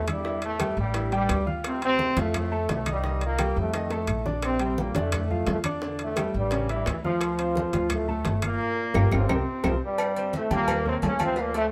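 Festive and sunny, this salsa excerpt puts a clear trombone section up front on the melody, with light vibrato and a pop-style ensemble sound. Beneath it sit a growly, thumpy pizzicato upright bass and a brilliant baby grand piano whose intimate, long-sustaining accompaniment carries audible action noise. Ringing metal-shell timbales and agogo bells sound close and dry, while woody claves, low-tuned congas, and tight, high-tuned bongos and cowbell sit in the background, the hand drums played with soft hands, under light reverb. A drum fill arrives at 3.9 seconds, and the band punches accents from 8.6 seconds before a new section at 10.0 seconds.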